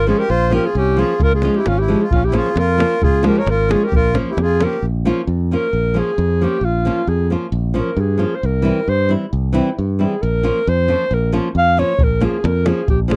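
A dry, close studio sound in a 1970s style frames this restless, virtuosic Balkan wedding-band excerpt in 2/4, cut from a longer piece. It starts at 133 BPM in Bb dorian sharp4, tuned to A4 = 438 Hz, and it speeds up throughout. A mellow alto saxophone carries the melody up front, playing in a classical style with light vibrato, a soft attack and a smooth top, and from 4.8 seconds it takes a solo over moves between Bbm and C. A reedy, single-reed accordion with dry tuning plays a clear second line in the opening section. Beneath them, a small nylon-string guitar is fingerpicked up front, its finger squeaks audible. A bright, punchy fingered electric bass sits up front as well, and a tight, close davul comes in at 1.2 seconds, drops out, and returns at 12.0 seconds.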